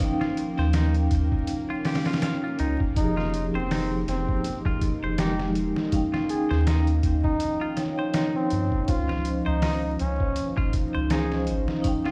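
A bucket-muted trumpet carries the melody from 3.0 seconds, its veiled, forceful jazz tone giving this smoky, cinematic trip hop excerpt its voice over an 81 BPM groove with a light swing on the sixteenths. Beneath it, a sampler-style drum kit sits up front with a thumpy kick, a medium-tuned snare and hi-hat, pitched down, compressed and gritty, while a round analog bass, deep and dark with a filter sweep, anchors the low end from 0.6 seconds. A vibraphone played with medium mallets rings with a metallic shimmer through tremolo and tape echo, and a bright, clean semi-hollow electric guitar picks arpeggios roughened by vintage 12-bit sampler grit and its own tape echo. A moody pad with chorus sustains chords in the background, and a very quiet, tense string-like drone with ring modulation adds an uneasy texture. The harmony moves through Eb9, Fm9, Eb9 and Dbmaj9, and the whole mix carries vinyl crackle and a stone room reverb, as if played on a big sound system in a bare room.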